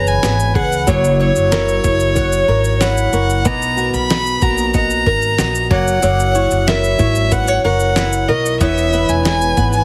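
A straight 4/4 pulse at 93 BPM drives this sunny, heartfelt acoustic pop excerpt, set by a dusty soul sampler-style drum kit that enters at 0.1 s with a thumpy kick, fat snare and shaker, gritty and compressed. Beneath it, a pizzicato upright bass with steel strings gives a woody, growly low end, while a small-sounding nylon-string guitar is fingerpicked as accompaniment. A bright bowl-back mandolin picks arpeggios on its double strings, sitting in the background. Up front, a single bowed violin carries the melody with smooth, even vibrato, set in plate reverb and tape echo. The harmony moves from C#m7 through F#7 and Bmaj7, returns to F#7 and lands on C#m7/E, all within light reverb and a heavily compressed, radio-like sound.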